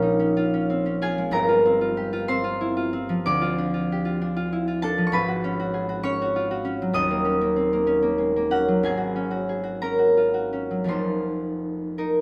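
A fingerpicked, ringing concert harp sits up front in this wistful, gentle classical solo excerpt, spanning Eb1 to Eb6 in a rubato 6/8 at 54-66 BPM (dotted quarters), tuned to A4 = 441 Hz, as it drifts through Bbm7, Gm7, Dm7, Abm7 and Ebm7 before settling on Ab9sus4 and F7sus4 inside a wet stone-room reverb across 12.2 seconds.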